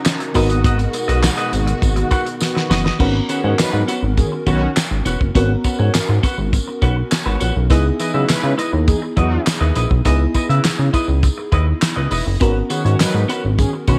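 A small room's light reverb frames this slick, funky cut of early-eighties boogie funk at 102 BPM in G# minor, with a dry, damped 70s drum kit up front: fat snare, tight kick, dark cymbals, hi-hat, crash and handclaps, joined by a jingly tambourine and a glossy, detuned synth bass. A clean, twangy electric guitar riff and a lush, dreamy FM electric piano with a soft pad layer carry the G#m7 harmony. A bowed string section adds expressive vibrato chords only until 3.0 s, under a band accent and a drum fill, and from 2.0 s a round, brassy synth brass line with a filter sweep enters, a second before the chord moves to G#m11.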